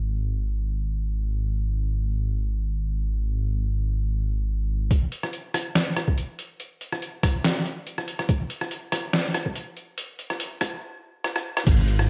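Lightly reverberant and filtered, this heavy, brooding deep dubstep piece at 142 BPM in a half-time feel with a slight 16th-note swing opens with a dark, rumbling detuned saw bass on G#1 alone until 4.9 seconds, when a thumpy, overdriven electronic kick and a muffled, pitched-down trip hop sampler-style kit with crash, hi-hat, rim click and medium-tuned snare drive a filter-swept build-up that ends in a drum fill before the bass returns at 11.7 seconds.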